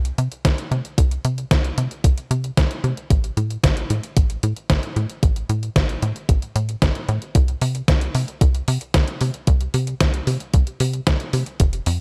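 A tight, punchy, driving sequencer bass of sawtooth and square-wave tones with a filter pluck and moving notch opens this danceable, playful italo disco excerpt at 113 BPM. It is joined first by a detuned 8-bit digital drum machine whose tape-warm hi-hat and medium-tuned snare carry gated reverb, and then by a thumpy, overdriven electronic kick drum that sits up front, all in a dry, close-sounding room.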